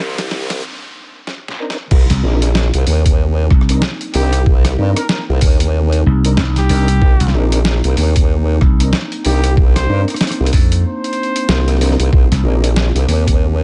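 A dry, high-passed mix opens on a warbling lo-fi pad and a saturated, wobbling formant bass over a Cm9 chord, with an electronic riser and fills from gritty boom bap drums building briefly. Soft organ stabs with key click enter at 1.6 s, and the drop at 1.9 s brings in a thumpy, pitched-down kick, followed shortly by a growly, punchy slap bass, while a mellow trumpet carries the melody from 4.1 s in this playful, funky glitch hop cut at 94 BPM in C minor with a swung 16th feel.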